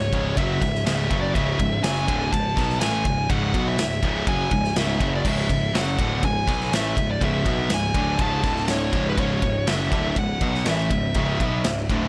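Heavy metal at 122 BPM in 4/4 with a straight feel, this aggressive, epic passage is cut from a longer piece and sits in C# phrygian, tuned to A4 = 438 Hz. A nasal lead guitar with a parked wah carries the melody between B4 and A5, its overdriven, picked tone sitting warm against the riffing below. Two double-tracked guitars share the low riff from C#2 to B3: one bright and overdriven, the other a sludgy distorted part placed in the background. A fuzz picked electric bass, direct and amped, adds a growly, bright edge down at C#1 to B1. The big acoustic rock kit sits up front with a punchy kick, medium-tuned snare, and bright crash and ride cymbals, playing from 0.1 to 12.0 seconds in a small room ambience. The harmony holds on C#m, moves briefly to D5 at 8.4 seconds, and returns to C#m at 8.9 seconds.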